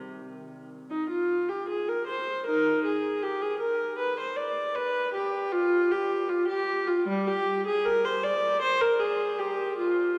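A long cathedral reverb, decaying over 5.0 seconds, surrounds a lone bowed viola, its gut-string tone reedy with a smooth top and played in period style from C3 up to D5. This solemn, grave baroque-style suite movement in C minor moves at 78 BPM in 4/4 with a free, rubato feel, and the unaccompanied viola carries the whole 10.2-second passage, which is cut from a longer piece.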